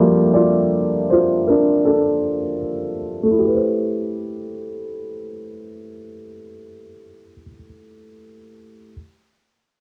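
Hazy and reflective, this swung hip hop fragment, cut from a longer piece, centres on a felt-muted upright piano that sits soft, mellow and intimate up front, playing alone through a filter sweep for its first 3.4 seconds before the harmony moves from Gm9 to Am9, all coloured by a worn, warbling cassette tape drift and a small room's moderate reverb.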